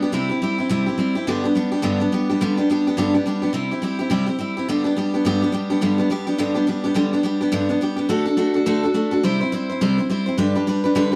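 A picked steel-string acoustic guitar, a bright and full-bodied dreadnought, sits up front and carries this rollicking, rowdy rock excerpt entirely alone, ranging from G2 to C5. At a brisk 211 BPM in 4/4 with a swung eighth-note feel, it moves through C, G and D in G major across roughly 11 seconds. The sound has a moderate studio ambience with the natural air of a band playing live in one room.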